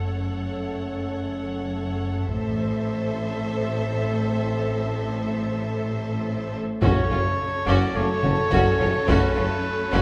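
Epic and dramatic, this cinematic orchestral film-score fragment at 106 BPM pits lush, vibrato-rich violins carrying the melody over a second violin line, close violas, distant cellos, background double basses and mellow French horn chords, moving from F#m to Am at 2.3 s with a brief burst of hard-stick taiko hits, before returning taiko, a distant clear trumpet's stabs, a dark, punchy trombone section, a clear tuba, soft round timpani and smooth background strings all arrive at 6.8 s in a wet concert-hall reverb.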